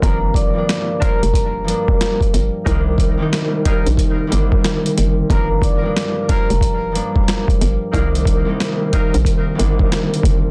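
This boom-bap hip-hop fragment opens with everything at once: a gritty, pitched-down sampler drum kit, a hollow, knocking FM bass, a bright fingerpicked concert harp, a soft-mallet vibraphone melody and distant horn stabs, all at 91 BPM in 4/4 with a 63% swing on the 16ths. The mood is reflective and dark, set in G minor and moving between Gm7 and Cm9. The drums sit up front and sound compressed, with a thumpy kick and a high-tuned snare captured in a large room, while the bouncy, punchy bass with its fast, decaying attack sits just beneath them. The acoustic harp rings out close to the listener as the main accompaniment, and the vibraphone, played with its motor off, carries a mellow, metallic melody touched with digital delay until it stops at 7.4 seconds. The roomy horn section adds mellow stabs with light vibrato and octave doubling, also treated with delay, before dropping out at 9.1 seconds. 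Light reverb surrounds the dense, heavily limited mix, and the recording is cut from a longer piece, ending at 10.5 seconds.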